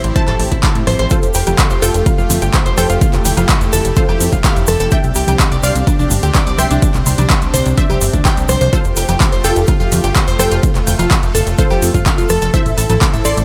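Lightly reverberant and pumping, this euphoric, expansive progressive house cut moves at 126 BPM in F major, with an overdriven, punchy electronic kick up front and a layered deep house kit of handclaps, metallic hi-hats and rim clicks. A funky, sawtooth plucky analog bass with tube saturation anchors the Am, Fadd9 and Csus2 changes, while a glassy, crystalline wavetable pluck plays chorused, tape-echoed arpeggios over a lush supersaw pad that sits in the background. From 0.2 seconds a full-bodied, wave-folded unison pluck carries the melody, bright woodblock and congas with hard hands join at 0.3 seconds, and a grainy egg shaker enters at 1.1 seconds.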